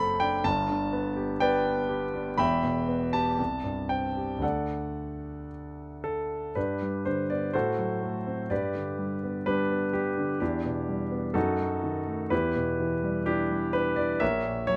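This romantic classical character piece for solo piano carries a hopeful, warm mood, moving in a slow two-beat metre with a flexible, rubato feel. A clear concert grand plays throughout, sitting up front and intimate, its range stretching from deep bass notes into the upper treble, with long sustain and a polished tone. The close, detailed miking leaves the instrument dry and present, so the mechanical noise of the action can be heard beneath the notes. The opening phrase settles on G and Em before passing through C and D. A second phrase begins at 6.6 seconds, where diminished and seventh chords add harmonic shading before the music breaks off at 14.8 seconds, cut from a longer piece.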